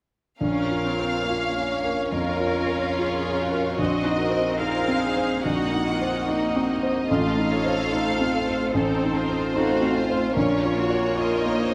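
Up front and intimate, with its action noise audible, a clear grand piano carries the melody of this tragic, brooding classical passage in Bb minor at a rubato 73 BPM, joined by two smooth, warm violin sections with vibrato on melody and a second line, a lush viola section accompanying in the background, and a cello section adding the bass from 2.1 s, all set in a moderate scoring-stage reverb.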